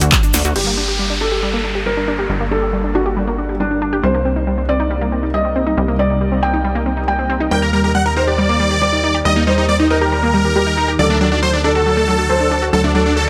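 A lightly reverberant mix opens this bittersweet, driving uplifting trance excerpt at 138 BPM in G harmonic minor, where a lush, detuned unison pluck spins filter-swept arpeggios with dub echo over a punchy, funky analog bass, both pumping against the sidechain, after a brief burst of overdriven techno drums with a drum fill and a grainy egg shaker in the first half-second. From 0.6 s a soft, felt-muted upright piano with audible action noise and 12-bit sampler grit carries a second line alongside a downlifter and noise sweep, while a shimmering, ethereal pad with chorus drifts in behind at 1.7 s as the chords move from Gm through Cm7. At 7.5 s a huge, euphoric supersaw lead with phaser and cassette-tape colour takes the melody on Eb, joined by a very quiet baby grand piano playing a second line, before the harmony settles on D.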